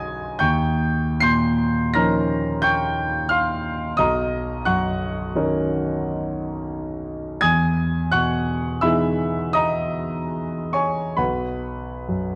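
Dreamy and luminous, this short passage cut from a longer impressionist work for solo piano drifts in B major through an unhurried 5/4, the tempo breathing freely with rubato somewhere between 66 and 91 BPM. A clear concert grand carries everything alone from 0.0 to 12.4 seconds, its span reaching from a deep bass at B1 up to C7 in the treble. The harmony glides through lush extended chords, from D#9 near the start to Bmaj9 at 4.0 seconds and Emaj7, before settling onto an open B5 at 11.2 seconds. Close, detailed microphones place the instrument up front with an open, clear tone, while a moderate concert hall reverb adds a gentle halo around each chord. The result feels intimate yet spacious, like light filtering slowly through a quiet room.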